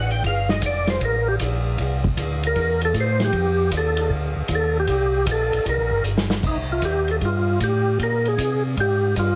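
Greasy, bluesy soul jazz organ trio swinging at 155 BPM in F mixolydian, where a percussive, lightly overdriven tonewheel organ carries the melody and solos through the first 6.4 seconds with slow rotary speaker, chorus vibrato and plate reverb over a mellow, round tonewheel organ bass line and a dark-cymballed vintage drum kit with a punchy kick that fills from 6.0 seconds, all squeezed into a heavily compressed radio sound across chords from Gm7 through C13, F13 and F9 to Bbsus2.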